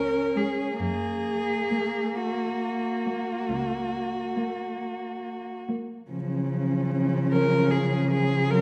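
A rich, smooth cello melody opens this brief cut from a longer classical piece, joined at once by a softly attacked second cello line with expressive portamento and a dark, woody bass cello, with a fourth cello's accompaniment entering at 0.4 seconds. The lyrical, warm mood unfolds in F# major at a slow, rubato 12/8 of roughly 44-51 BPM, tuned to A4 = 435 Hz. All four cellos are bowed with vibrato, the two upper voices sitting up front, and the music moves into a new section at 6.1 seconds within a moderate concert hall reverb.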